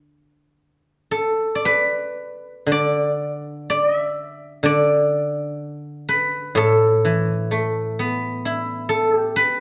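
A dark, moderately reverberant recital-hall sound surrounds this short cut from a longer Chinese traditional piece, pastoral and elegant in mood. A solo acoustic guzheng, played with fingerpicks and placed up front, rings out bright and silvery from A2 to E5 in a free, rubato 4/4 at roughly 53-65 BPM. The music moves into a new section at 2.7 s and continues until 9.6 s.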